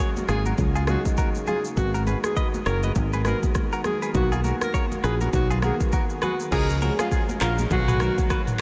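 A swung afro-pop groove drives this short, sunny afrobeats clip, with an electronic drum kit up front, built on a deep kick, rim clicks, handclaps, shaker, toms and crash, while a growly, punchy fingered bass sits beside it and very quiet, high-tuned congas sound distant. Soft, round electric-piano-like synth keys with chorus hold the background as a bright, twangy clean electric guitar picks a riff through spring reverb and analog delay, and a smooth alto saxophone with vibrato and a soft attack carries the joyful melody. A vintage horn section slips in very quietly as a second line at 6.5 s, and the whole mix is soaked in a huge, dreamy ambient reverb.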